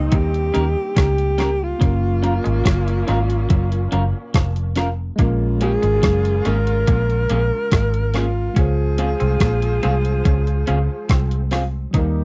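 A breathy, close-miked alto saxophone sings a longing, bittersweet lovers rock reggae melody with tape echo over a gated, overdriven 80s drum machine, a dark foam-muted bass, a distant horn section, tine electric piano, twangy guitar riffs and slightly broken-up guitar stabs, moving at 71 BPM through Eb7, Gbmaj7, Bbm7 and Dbmaj7 in a dry, close 1970s-style sound.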